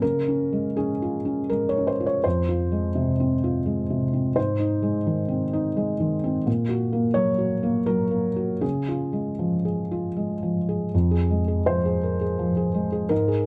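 A felt-muted upright piano plays alone from the first moment, its thick-felt tone mellow, intimate and set up front, in a reflective, melancholic neoclassical minimalist piece in F phrygian. The 3/4 pulse moves with rubato at roughly 77-87 BPM, drifting through Db, Fm, Ab and Gb/Bb before returning to Db and then Fm as the opening phrase begins again at 10.9 seconds. Light reverb and a dark production frame this short passage from a longer work.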